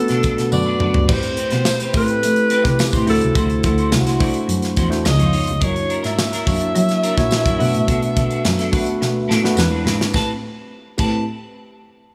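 Polished 1980s jazz-funk pop with an urban, slick mood, cut from a longer piece, where a breathy alto saxophone with subtone and scooped notes carries the melody over a mellow tine electric piano with lush chorus, a bowed cello bass played with vibrato and portamento, a clean picked semi-hollow guitar riff with ensemble chorus, a punchy up-front studio drum kit that plays fills at 0.5 and 9.0 seconds, and a very quiet jingly tambourine, all set in a small room ambience with light reverb as the chords move from Bm7 through Am9, D9 and F#7b13 before returning to Am9 at 10.1 seconds.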